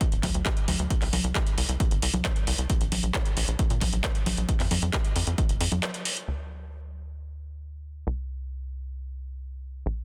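Driving and bittersweet, this uplifting trance excerpt at 134 BPM in a straight 4/4 opens with a punchy layered electronic kick and an up-front techno kit of congas, handclaps and metallic hats pumping against the sidechain, both recorded back through a small room, while a tight, nasal sawtooth-and-square sequencer bass with a plucky filter, fast attack and decaying notes pumps across a range of D1 to Bb2, carrying on alone after a short break at 5.8 seconds as the drums drop out by 6.3 seconds, all in a dry, dense, heavily limited modern master.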